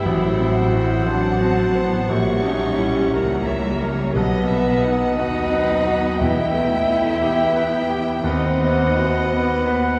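Classical romantic writing for piano and orchestra, this brooding, tragic passage moves in a lilting 12/8 with a flexible, rubato feel, cut from a longer piece. The clear concert grand piano carries the melody up front, its deep bass ringing openly beneath the line, while a studio violin section also carries the melody high above in the background with expressive vibrato. Alongside them, a close-miked solo clarinet, a hollow, airy flute at a very quiet level, and a rich, focused chamber violin section weave a second line. A mellow French horn section holds tight, sustained chords, and a smooth-topped viola section supplies accompaniment, while a lush symphonic cello section and a distant chamber double bass section anchor the bass with soft attacks. Round, very quiet timpani on calf heads enter at 4.1 seconds and play until 7.2, and the harmony darkens through diminished chords before moving through B and E minor and closing on B over D-sharp. 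A long cathedral reverb bathes the ensemble in the resonance of a church or concert hall.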